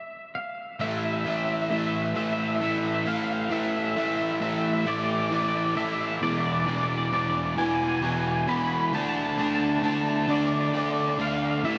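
A twangy electric guitar opens alone, its clean, fingered melody sitting high and compressed, blurred by lush chorus and a diffuse ambient delay. At 0.8 seconds an overdriven semi-hollow guitar enters up front with a bright, double-tracked, picked riff that ranges from low to middle register and also carries lush chorus. This slow rock piece moves at 44 BPM in a straight 6/8, and the whole passage works as a build-up, moving from A5 through E7 at 6.2 seconds to D5 at 8.9 seconds. A huge ambient reverb with an eight-second tail soaks the mix, giving it a dreamy, suspended quality. The mood is melancholic yet cathartic, and the clip is cut from a longer piece.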